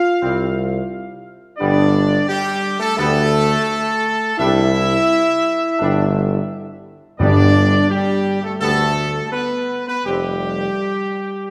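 Solemn and majestic, this classical ceremonial fanfare in G mixolydian moves at a straight 85 BPM in 4/4, with a bright, up-front trumpet section carrying the melody over sustained chords from a French horn section with light vibrato and a clear, vintage-toned trombone section set in the background, a soft-attacked, roomy tuba anchoring the bass, and round soft-mallet timpani sounding only from 7.2 to 8.2 seconds, all bathed in a wet scoring-stage reverb through a brief 11.5-second excerpt cut from a longer piece.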